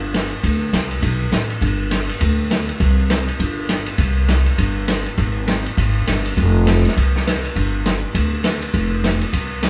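A plucked upright bass opens this short country and western swing passage, its steel strings giving a woody, dark tone that sits up front from the very start. A vintage acoustic drum kit joins at 0.1 seconds with hi-hat, kick, snare and ride cymbal, pairing a punchy kick and medium-tuned snare with dark cymbals and a rolled-off top. The drums sit a little lower in level than the bass but still feel close and mid-forward in the studio room. The brisk 4/4 groove rides on swung eighth notes, giving the duo a cheerful, down-home bounce. Light reverb places both players together as a band in one room, and the clip, lifted from a longer piece, holds a single section through to 9.7 seconds.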